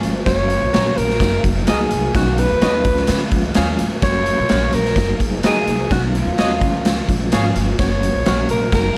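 A raspy, growling alto saxophone carries the melody in this uplifting fragment of 1960s-style soul, over a gritty, punchy garage drum kit up front, a woody, thumpy pizzicato upright bass, a reedy electric piano with fast tremolo in the background, and twangy, slightly broken-up guitar stabs from 0.7 seconds, all in a dark, warm production with light reverb.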